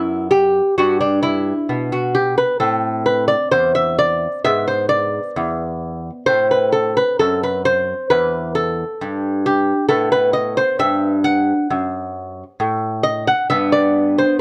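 A solo lute opens this short excerpt of a baroque-style classical dance in E minor, its delicate, fingerpicked double strings sitting up front, some of them octave-doubled, across a range from E2 to F#5. At 66 BPM in 4/4 with a rubato feel, the mood is flowing and introspective, moving from E minor through A minor and E7/G# before settling on B5 and closing on G6 at 13.5 seconds. The dark production places the nylon-strung instrument in a moderate studio reverb.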